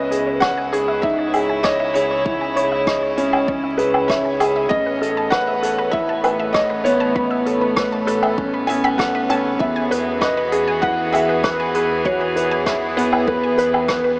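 Melancholic and cinematic, this piano and strings electronica excerpt moves at 98 BPM in C# minor, with a dark, worn grand piano riff up front, its action noise audible, while a soft, felt-muted upright piano carries the melody through analog chorus and delay over gut-toned chamber strings holding sustained chords that pump with sidechain. A round, detuned analog bass pumps underneath, a very quiet analog pluck traces detuned arpeggios, and a brushed vintage kit of hi-hat, rim click and woodblock enters at 0.1 seconds, followed by a deep, layered electronic kick from 0.4 seconds. The dreamy mix is soaked in a huge ambient reverb with a small-speaker quality as the harmony shifts from C#madd9 to Aadd9 and then Eadd9.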